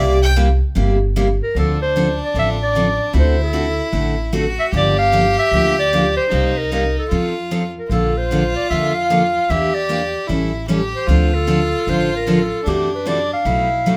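Set in a moderate studio room, this fiery, bittersweet snippet of swinging acoustic string jazz opens with a brief solo from a clear, nasal, airy-bowed violin over a bright, picked steel-string guitar with audible finger squeak and a woody, thumpy pizzicato upright bass, before a warm, vibrato-laden clarinet takes the melody at 1.4 seconds while the violin settles into a close second line.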